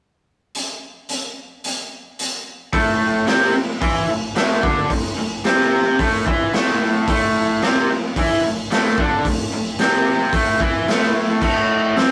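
Garage rock with a rowdy, swaggering feel at 111 BPM: a punchy, gritty drum kit of kick, snare, hi-hat and crash starts alone at 0.5 seconds in a bright stone room, then an overdriven, double-tracked electric guitar riff enters up front at 2.7 seconds on an A5 chord, all caught in a rough rehearsal-room recording cut from a longer piece.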